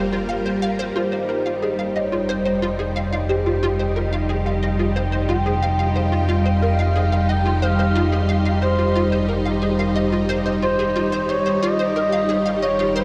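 This is ambient, sequencer-driven space music at 90 BPM in a straight 4/4, tuned to A4 = 439 Hz, with an expansive, hypnotic mood that rests on a single Fsus2 chord throughout this 13-second section cut from a longer piece. A lush, vintage string machine plays sustained full-ensemble chords up front, its slow attack and ensemble chorus giving it a bright sheen, while a fat, saturated analog bass holds a low F1 with a wave-folded, filter-swept growl. Over this, a hollow, bouncy square-wave pluck repeats a riff with a fast attack and short decay, detuned and thickened by ensemble chorus and analog delay. From 1.0 s, an expressive synth lead enters with a smooth, dark tone, soft attack, vibrato and a moving notch, set in chorus and analog delay. Behind everything else, an airy, breathy wind-like noise texture drifts in the background with its own built-in reverb, and the whole mix sits in a huge, wet ambient reverb with a 7.5-second decay.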